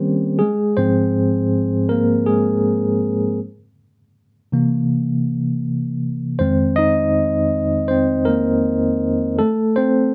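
A solo tine electric piano opens this short R&B fragment, its clean, warm tone shimmering with a medium tremolo as it plays through a combo amp and sits up front in the mix. The mood is sensual and relaxed, carried by an unhurried groove in 4/4 with a gentle swing on the sixteenths. The piano spans from low F2 up to Eb5, moving through rich, jazzy harmony from Ab69 to C7 and then Fm7 before settling on a rootless F chord near 9.4 seconds. A wet studio reverb with a short decay gives the instrument a soft sense of space. The recording is cut from a longer piece, and the piano plays alone for its full length of about 10 seconds.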